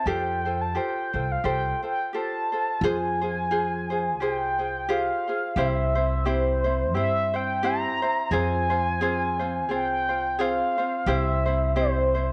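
A mellow, horn-like synth lead carries the melody up front in this languid, dreamy Hawaiian piece. Its round, vintage sawtooth tone has a soft attack, sustained notes, vibrato, a filter sweep and a warbling chorus. A light, fingerpicked ukulele supplies acoustic accompaniment, while a woody, growly pizzicato upright bass with steel strings joins at 0.1 s and adds a thumpy low end. The unhurried groove swings its eighth notes in 4/4, and the harmony opens on Fadd9 before a new section begins on Fmadd9 at 2.8 s and then moves between C and Fm. A moderate echo chamber reverb and a small room ambience give the recording a close yet gently blooming space, and the passage is cut from a longer piece.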